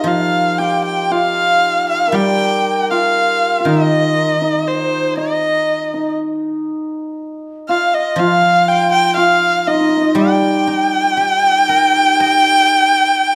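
In a free, rubato 4/4 pulse around 60 BPM, this wistful, graceful piece of Chinese traditional chamber music in G jue mode is cut from a longer work and sets a rich, focused erhu, played by a single player, up front, singing the melody with vibrato and portamento. Beneath it, a shimmering hammered dulcimer and a very quiet, distant large bamboo dizi, hollow and pure with a buzzing membrane and soft attack, weave second lines. A silvery guzheng played with fingerpicks rings out the accompaniment, all four sounding together from 0.0 to 13.3 seconds in a moderate recital hall reverb.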